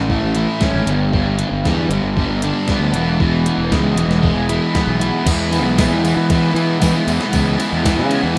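A straight 4/4 pulse from a gated 80s drum machine, with its thumpy kick and roomy gated-reverb snare carrying a tape-warm sheen, drives this wistful yet upbeat indie rock fragment, where a crunchy, up-front overdriven guitar and a raw, bright garage guitar with analog chorus pick riffs over a growly fuzz bass, and a jingly tambourine slips into the background at 5.3 s, the whole thing captured as a rough home-demo mix with light reverb.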